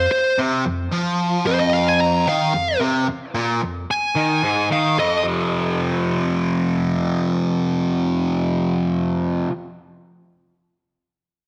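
A dark, fuzzy lead guitar takes a solo melody through its tape echo until 5.2 seconds, when the harmony settles onto F5. Beneath it, a bright, double-tracked fuzz guitar with phaser drives a low riff through 9.5 seconds, both guitars sitting up front. This mysterious, trippy rock fragment in F minor moves in 7/8 at 221 BPM in eighths, wrapped in an echo-chamber reverb.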